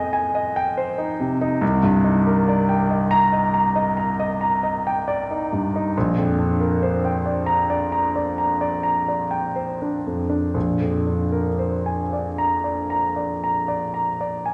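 The music moves in a five-beat metre, played with a free, elastic rubato that lets each bar breathe at its own pace. This is impressionist classical writing for solo piano, wistful and a little mysterious, cut from a longer piece and tuned slightly low at A4 = 439 Hz. A concert grand carries the whole 14.5 seconds alone, its clear tone spanning from a deep bass Bb1 up to Bb5 and sitting up front with a natural character. The harmony drifts through rich extended chords, from Fm9 to Cm9 and then to Bb69 at 5.9 seconds, before settling on Bb9 at 10.5 seconds. A wet recital hall reverb with a 1.4-second decay wraps the instrument in a soft halo of space, heightening the dreamy, unresolved atmosphere.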